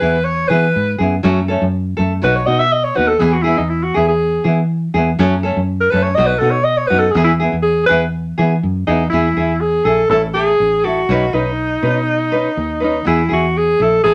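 A mellow alto saxophone leads this carefree, sunny highlife excerpt in E major, soloing up front from the start with a smooth top, vibrato and a jazz-style phrasing that carries the melody through the first 9.1 seconds. Beneath it, a nylon-string guitar fingerpicks the accompaniment with a full-bodied, deep classical tone, small finger squeaks audible in its playing. A fingered electric bass sits close and direct, its round, dark, foam-muted sound anchoring the low end. At a straight 122 BPM in 4/4, the harmony cycles through E, F#m and B before a second section at 9.1 seconds brings A and Badd9 and settles back on E at 13.1 seconds. Moderate studio reverb gives the three parts a modest sense of room while keeping them present and clear.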